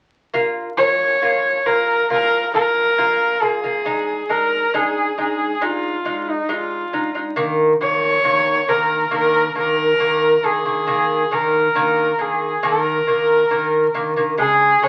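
A husky, earthy horsehead fiddle carries the melody in this solemn, windswept fragment of Mongolian folk music. It enters at 0.8 s, one bowed player on horsehair strings, clear yet distant in character while sitting up front, colored by light vibrato and portamento. Beneath it, from 0.3 s, an acoustic lute spins delicate fingerpicked arpeggios on nylon double strings, some doubled at the octave, giving a bright shimmer at a slightly lower level than the fiddle. The pair move at a measured pace in a straight four, holding to a single section that closes around 14.4 s. A wet studio reverb surrounds the performance, and the sound of a very old 78 rpm record, complete with vinyl crackle, lends the whole fragment an aged, faraway patina.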